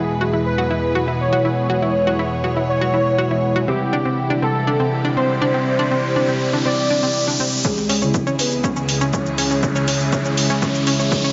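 This hypnotic, melancholic melodic techno excerpt at 121 BPM in C# phrygian opens on a bold, brassy analog synth brass melody with chorus and delay, fat synth brass stabs, a round analog pluck arpeggio, lush bowed string chords, a faint evolving analog drone and an ethereal, airy pad, with the melody, stabs, pluck, strings and pad all pumping to the sidechain in a reverberant hall sound, until a riser enters at 4.8 s and a punchy, overdriven electronic kick drum with layered shaker and hi-hat arrives at 7.6 s for a build-up as the chords move from E through C to C#m.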